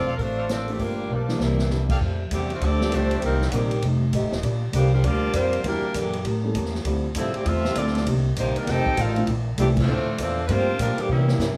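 An edgy, close-miked saxophone section carries the melody with vibrato up front in this joyful, energetic big band swing passage in F major at 198 BPM, driven by a woody, growly pizzicato upright bass and a swinging drum kit with a punchy kick and a natural studio-room sound. A bright trumpet section adds brief stabs at the opening before a loose, soft-attack trombone section enters with a second line at 1.4 seconds, while a dark, boxy upright piano and a fingerpicked archtop guitar, complete with finger squeak, sit in the background. Drum fills around 1.1 seconds and at the close, plus a band accent at 9.7 seconds, punctuate the excerpt, which is set in moderate large studio reverb.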